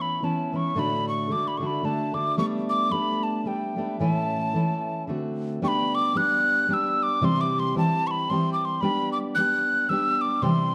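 A lilting 3/4 waltz at 112 BPM with a gentle swing on the eighth notes sets this short, cheerful and lively Celtic folk passage in motion. A hollow wooden whistle carries the melody high in its register, close-miked and up front, its airy, mellow tone shaded with vibrato and a soft attack. Beneath it, a fingerpicked steel-string dreadnought guitar supplies the accompaniment, sounding woody and full-bodied with the dark tone of old strings. The harmony opens on Aadd9 and D/A, then moves through Gadd9 and A before a D7 at 5.1 s leads into a second phase of G, C and G from 5.6 s to 10.7 s. Both instruments play throughout, set in a moderate recital-hall reverb that gives the dark production a rounded glow.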